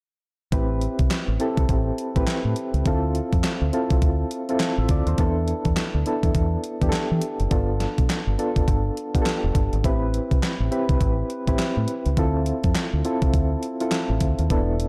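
An overdriven gated 80s drum machine with a thumpy kick, a snare drenched in gated reverb, handclaps and hi-hat opens this confident, bouncy new jack swing R&B excerpt from 0.5 seconds alongside a deep, round, foam-muted fingered electric bass and mellow electric-piano-like synth keys shimmering with chorus and tremolo, all cycling through Am9, Dm9, E7sus4 and G7 in a dark, lightly reverberant mix with a swung sixteenth-note feel.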